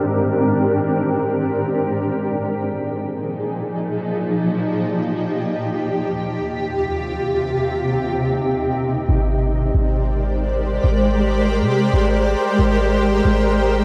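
A shimmering, detuned ambient pad carries this dreamy, floating cloud-rap fragment in free time, its slow-attack chords drifting through Abmaj9#11, Bb7sus4 and Eb69 in Ab lydian, tuned to A4 = 442 Hz, with chorus, built-in reverb and a low-pass filter sweep running until 9.1 seconds. At 9.1 seconds a clean, boomy 808-style bass enters beneath it, deep and dark with a fast attack that decays, as the harmony returns to Abmaj9#11. The ethereal pad sits up front in light digital ambience, while the recording itself has a dry, gritty hardware character, cut from a longer piece.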